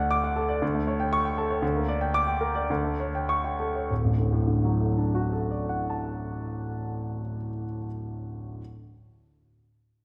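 Heroic and brilliant in spirit, this short passage from a classical virtuoso piano study unfolds in 2/4 with a flexible, rubato feel. A solo grand piano carries the whole 8.6 seconds, its tone clear and present with a long sustain, placed up front and spanning from D1 to D6. Early on, between 1.1 and 3.9 seconds, the pace slows, stretching the phrase before a new passage begins. Beneath the playing, the harmony stays anchored over D in the bass while the chords above shift through dominant and minor colors before returning home. A wet recital hall reverb, heard from further back in the room, lends the performance a lingering, spacious halo, and the piece breaks off as a fragment of a longer work.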